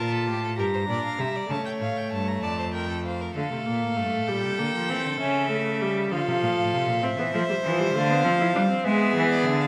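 Classical baroque-style fugue for string quartet in 6/8, solemn yet driving, heard as a short cut from a longer piece. Two gut-strung, period-style violins carry the melody and a second line, with the second violin sitting close. An up-front viola with a smooth top supplies the accompaniment, an equally forward cello holds a rich bass, all four are bowed by single players with a reedy edge, and a wet recital hall reverb surrounds the quartet as the harmony settles into its home key from 3.4 s.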